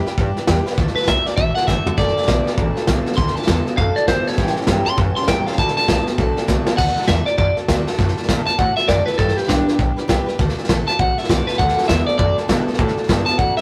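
Rockabilly at a brisk 200 BPM with a swung feel in D mixolydian, this upbeat, rowdy passage is cut from a longer piece and has the rough sound of a rehearsal room with light reverb. A woody pizzicato upright bass and an up-front brush kit with dark cymbals and a tight kick drive it from the start, while a bright dreadnought acoustic guitar is picked in the background. At 1.0 s a twangy, scooped lead electric guitar at the edge of break-up takes the melody with tape echo, and a lo-fi, fingered second electric guitar through a small old amp adds a low riff from 2.0 s, drops out, and returns at 11.6 s over chords moving through G, D and A7.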